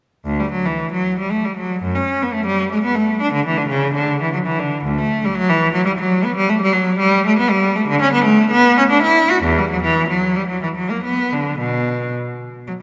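In a flowing triple metre with a free, rubato feel, this short classical passage, cut from a longer piece, unfolds as a baroque-style suite movement for unaccompanied cello. A single bowed cello carries everything alone from 0.3 s to 12.7 s, its tone clear, smooth and even, with vibrato and a close, up-front presence. The line ranges from deep low notes up into the instrument's singing upper register, and the harmony turns from a major key toward its relative minor at 6.4 s. A wet church reverb with a long 2.5-second decay surrounds the instrument, lending the radiant mood a spacious, resonant glow.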